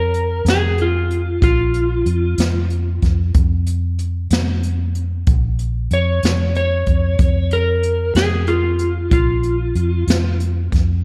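A smoky, mournful slow blues in 12/8 at 62 BPM, this short passage in B-flat minor is cut from a longer piece. An electric slide guitar carries the melody from the start until 10.4 seconds, its slightly broken-up tone kept up front and trailed by a slapback echo as it moves between F4 and D-flat 5. Underneath, a vintage muted fingered electric bass sits low between B-flat 1 and F2, dark, round and punchy with a foam-muted, amped character. A jazz kit played with brushes keeps a straight feel on hi-hat, a medium-tuned snare and a boomy kick, close and present in a studio room. Light reverb and small room ambience wrap the trio, which rests on a single B-flat 5 chord throughout.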